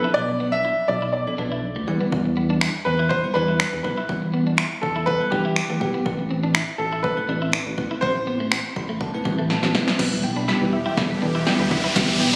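A straight 4/4 pulse at 122 BPM drives this bittersweet, energetic dance-pop fragment, where a natural, up-front baby grand piano carries the melody through tape echo over a bell-like tine electric piano and a glossy chorused synth bass, both pumping with the sidechain, plus a clean picked electric guitar riff with subtle chorus, before a punchy analog drum machine enters at 2.1 s with kick, snare, hi-hat, finger snaps and crash, and a build-up from 10.0 s adds a lush background supersaw pad, soft round pluck arpeggios with chorus and tape echo, and at 10.9 s a riser, the whole set in a moderate hall reverb.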